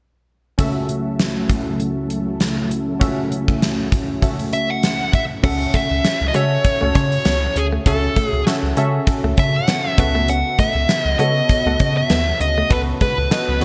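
Urgent and dramatic, this excerpt of 1980s-style pop at 99 BPM opens with detuned, chorused analog keys, a gated drum kit with bright cymbals and a tight kick, and background string-machine cellos and dark synth brass stabs, before an overdriven, dark lead guitar takes the melody at 4.5 seconds and a round analog bass and twangy, clean direct-recorded guitar riff join at 5.4 seconds, all in a bright digital production with plate reverb.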